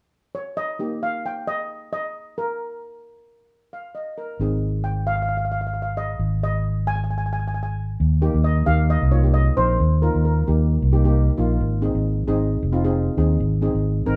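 A straight 4/4 calypso pulse at 133 BPM drives this carefree, festive excerpt from a longer piece, where a shimmering, dark steel pan sits up front with the melody from 0.3 seconds, a mellow second double-seconds pan struck with soft rubber sticks fills out the Eb and Ab harmony, a steel pan fill arrives at 3.5 seconds, and a round, punchy fingered electric bass joins at 4.4 seconds, all set in a moderate studio reverb as a band playing live in one room.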